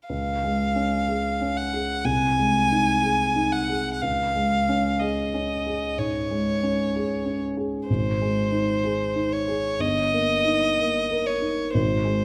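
A clear, smooth solo violin sings a lyrical melody with even vibrato over a warm grand piano accompaniment from the opening moment, both up front in a wet recital hall, in this warm romantic classical excerpt played with rubato in 4/4.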